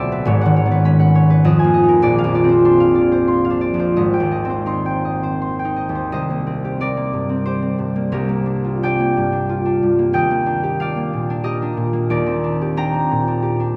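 This classical solo harp excerpt is mysterious and wistful, unfolding in a flexible, rubato triple metre as the concert harp, close and up front, spans its range from Ab1 to C6 in fingerpicked, ringing chords. The harmony drifts through rich seventh and extended chords, and at 6.1 s a new section begins, settling toward C minor colours. A wet cathedral reverb with a long tail surrounds the harp, so the playing seems suspended in a vast, echoing space.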